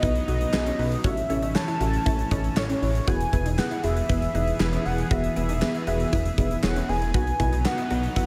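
Synth-pop in E major at 118 BPM in a straight 4/4, this short cut from a longer piece feels wistful yet bright, moving through B, A and E chords before returning to B at 7.1 seconds. A velvety, full-bodied synth lead carries the melody between C#5 and A5, its detuned sawtooth tone smoothed by chorus and touched with vibrato. Beneath it, a warbly, dusty pluck with a lo-fi noise layer and filter sweep supplies mellow accompaniment, while a shimmering pulse-width pad with ring modulation and a sub octave sustains chords in the background. A very quiet, squelchy blip pluck adds resonant arpeggios coloured by a phaser, and a glossy, dark synth bass with an evolving moving notch anchors the low end. Up front, a huge arena drum kit with a punchy kick, medium-tuned snare, hi-hat and handclaps pumps in a hall-like space, all set in light reverb and small room ambience.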